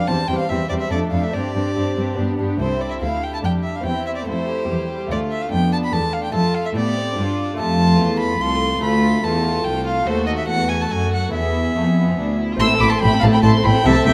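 Stormy and dramatic, this passage from a longer baroque-style concerto movement with solo episodes moves at 144 BPM in a straight 3/4, set in C major before turning to A minor from 7.6 s, with the strings playing in period style with gut-string tone. An up-front solo violin, rich and reedy with light vibrato, carries the melody together with a very quiet, dark violin section that shares the line, while a rich violin section plays a second line beneath. A distant, dark viola section fills in the accompaniment alongside a delicate, bright, fingerpicked lute with double nylon strings, some octave-doubled, sitting very quietly in the mix. The warm cello section, up front despite its distant quality, holds the bass from 0.1 s, and a rich double bass section joins it at 12.6 s as the harmony settles on A minor. The chords build tension through a diminished chord into E before that arrival, and the ensemble sits in a wet stone room with a 1.4-second reverb.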